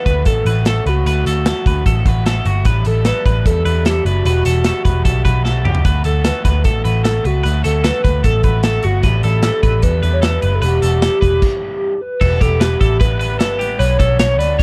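Nostalgic and breezy, this jangly indie pop excerpt in D major moves at 150 BPM in a straight 4/4. A warbling, detuned square-and-sawtooth lead carries the melody through chorus and tape echo over bright, twangy twelve-string electric guitar arpeggios and a raw, lo-fi overdriven garage guitar. A dark, round, foam-muted picked bass sits up front, and a punchy studio drum kit with a pumping room sound plays a fill at 5.5 seconds and a stop at 11.4 seconds before the chords shift toward Em7 and Bmadd9 in a fresh closing passage, all in a dry mix.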